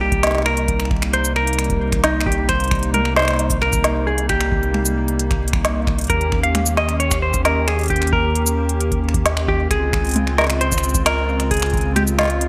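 IDM at 133 BPM in C phrygian, eerie and intricate, where a clean, up-front semi-hollow electric guitar carries the melody with 12-bit sampler grit and digital delay over a soft, flute-like pad with chorus, a round sine sub bass, a deep electronic kick, and an organic electronic kit of woody snare, crisp hats, finger snaps, shaker and toms under gated reverb, all moving through Cm7, Eb7 and Dbmaj7 in a bright 1980s-style digital sheen of this excerpt from a longer piece.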